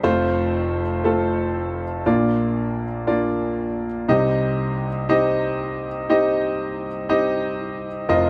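A solo grand piano opens this reflective, melancholic folk excerpt, sounding warm, intimate and a little boxy, with the clatter of its action audible beneath the notes. It moves at an unhurried 60 BPM in a straight 4/4, set in C dorian, and spans from a deep F1 up to Eb5. The harmony rests on F, shifts to Bb at 2.0 seconds, and settles onto C minor as a second section begins at 4.1 seconds. The piano sits up front while a wet studio ambience, with a short 0.5-second decay, gives a sense of the room heard from further back. The piano plays alone throughout the 8.3-second fragment, which is cut from a longer piece and leaves a reflective mood hanging in the air.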